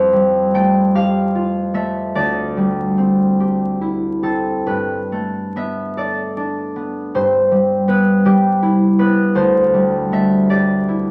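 In an unhurried, rubato 6/8 lilt at 44-55 BPM, counted in dotted quarters, this graceful, dreamy classical excerpt features a solo concert harp, fingerpicked and sitting up front with a bright, ringing tone across a span from D2 to G5, moving through Fadd9, D9sus4, Gadd9 and Cmaj7/G chords in a stone room's moderate reverb, with vinyl crackle and tuning set to A4 = 438 Hz.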